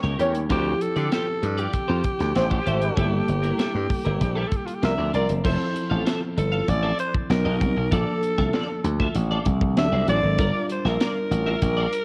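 Slick and urban, this polished 1980s jazz-funk pop excerpt in G dorian moves at 97 BPM in a straight 4/4, with a bright, up-front slap bass and a crisp fusion drum kit with a high-tuned snare and punchy kick beneath a worn, slightly out-of-tune tine electric piano with light overdrive and analog chorus, a clean, compressed twelve-string electric guitar riff, and a mellow horn section in octave doubling that plays from 0.2 to 5.3 seconds, while a breathy, raspy alto saxophone carries the melody from 0.5 seconds over rich chords such as Dm11, Gm69 and Bbmaj7, all set in a small, lightly reverberant room on a home cassette recording.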